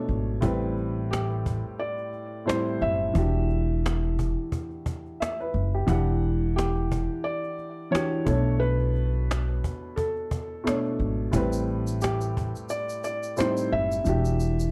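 Lo-fi hip hop at 88 BPM with a swung 16th feel in E minor, reflective and melancholic, where a soft, felt-muted upright piano carries the melody through tape echo and a low-pass filter over a dark, boxy upright piano accompaniment, a woody, thumpy pizzicato upright bass on gut strings and a snappy cajon with snares, while a grainy egg shaker joins at 11.3 s and the kick drops out at 14.1 s, set in a dark, warm production with light reverb and cut from a longer piece.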